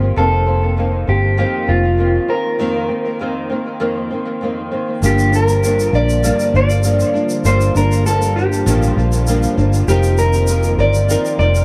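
An echo-heavy, lightly reverberant bedroom-pop excerpt in G minor at 99 BPM, hazy and mellow, where a fingerpicked flamenco guitar with finger squeak, analog chorus and warbly pitch drift and a round, foam-muted vintage bass sit up front beside a dark, slightly broken-up electric guitar melody through a small old amp, before a very quiet detuned sawtooth pad and a grainy tube shaker join at 5.0 s as the harmony moves from F7sus4 to Gm7 after a break.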